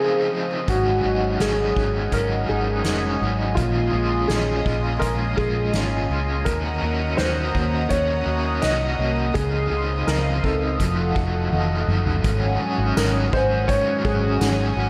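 Dream pop at 83 BPM, hazy and haunting, this excerpt opens with a felt-muted upright piano carrying a mellow, intimate melody with audible action noise, floating over a swirling, detuned analog pad, a hollow-bodied overdriven semi-hollow guitar and a slightly broken-up electric guitar tucked in the background picking arpeggios through lush chorus and diffuse delay. At 0.7 seconds a dark, round, foam-muted bass sits up front while a distant, roomy soft-mallet drum kit with a punchy kick, snare, hi-hat, tambourine and toms joins, adding a fill at 11.5 seconds that leads into a new section at 12.2 seconds. The chords drift from Dbmaj9 through Bbm11, Ebm7 and F7b9 to Ab7sus4, all soaked in a moderate plate reverb.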